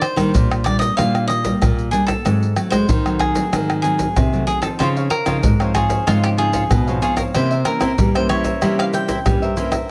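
A bittersweet, nostalgic samba-choro fragment at 94 BPM in a straight 4/4, cut from a longer piece. A crisp, picked cavaquinho carries the melody from the start, while a full-bodied, fingerpicked nylon-string guitar lays down classical-style accompaniment with audible finger squeak. A second nylon-string guitar takes the bass line from 0.2 seconds. A second cavaquinho joins with picked accompaniment at 4.8 seconds. Pandeiro, tamborim, tube shaker and a deep surdo sit up front, close and dry with hard hands, as the harmony moves through Ebmaj7, Ab7b9, Dbmaj9 and C7b9. Close, detailed microphones and light reverb give the recording an intimate, natural presence.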